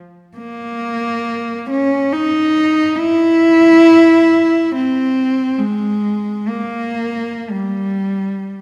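A moderate recital-hall reverb surrounds a close, intimate cello placed up front, its tone airy and softly veiled from bowing sul tasto. This brief classical fragment, cut from a longer piece, gives the unaccompanied instrument a free, expressive line that feels mournful and yearning. A single player enters at 0.4 s and sustains the solo through 8.6 s, staying in a compact middle register between G3 and E4. Soft attacks and a light vibrato lend each bowed note a gentle, sighing quality. The hall's reverb frames the cello's warm voice with a sense of space while keeping the performance personal and near.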